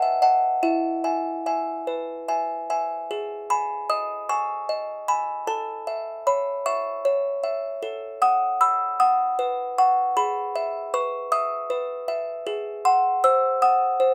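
Swaying in a rubato 6/8 at 51 BPM counted in dotted quarters, this innocent, dreamy classical lullaby in E major is carried by a solo music box, delicate and tinkling with a plucked, small-box character, placed up front by close, detailed microphones in light reverb; it ranges from E4 to E6 as the harmony moves from a rootless B7 to E, then, from 3.1 s, through G#5, A, B7/A and E/G# before arriving on G#7 at 12.5 s, shortly before this fragment of a longer piece ends at 14.1 s.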